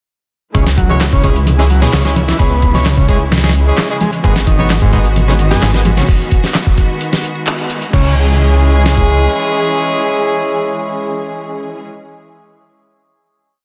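A thick, menacing detuned saw bass sits up front with long gliding notes, driving a gritty, raw breakbeat piece built on a compressed, thumpy sampler-style drum loop with edits, a tape-warm garage clap and hat layer, and soft background congas. A buzzy combo organ repeats a step-sequenced riff and a tight horn section punches dotted-rhythm stabs, both trailing dub echo, while a lush, distant string section holds sustained chords that pump under sidechain. A clear alto saxophone slips in briefly at 5.5 seconds with an old-record tint, a band accent hits at 7.5 seconds, and the strings and horns ring out a final chord from 7.9 seconds.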